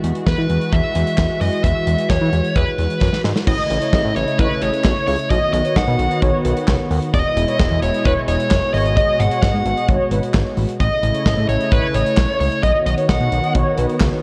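An overdriven, dark electric lead guitar sits up front from 0.3 seconds, carrying the melody through a diffuse ambient delay over a bright, upbeat synth-pop groove at 131 BPM in straight 4/4, backed by a smooth, detuned analog pad with chorus and a fat, sawtooth-and-square analog bass with a moving notch. A small-room acoustic kit with tight kick, handclaps, hi-hat and crash carries a gritty 12-bit sampler edge and plays a fill at 3.0 seconds, leading into a passage where a round, brassy synth line with a filter sweep joins at 3.5 seconds as the chords move through A, B, E and G#m7. The dreamy, cassette-tinged mix is soaked in plate reverb, and this cut is taken from a longer piece.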